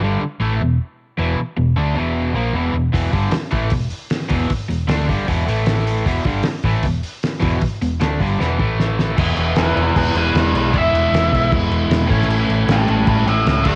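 This short cut from a longer garage rock number sounds like a home recording on cassette in a small room, raw and rowdy, with a gritty, saturated edge. A bright, crunchy overdriven guitar opens up front on a picked, double-tracked riff in straight 4/4, joined by a round, hollow-body short-scale electric bass played with the fingers. The cloth-damped drum kit thuds in at 2.9 seconds, muffled and rolled-off on top, with dim cymbals, a fat snare, a tight kick and a hi-hat and crash, and it plays a fill at 8.4 seconds into the next section. At 9.6 seconds an octave-fuzz lead guitar takes the melody, sitting shadowy and distorted at the front of the mix. The changes stay simple, moving between E and A power chords before opening into fuller E and A chords for the closing stretch.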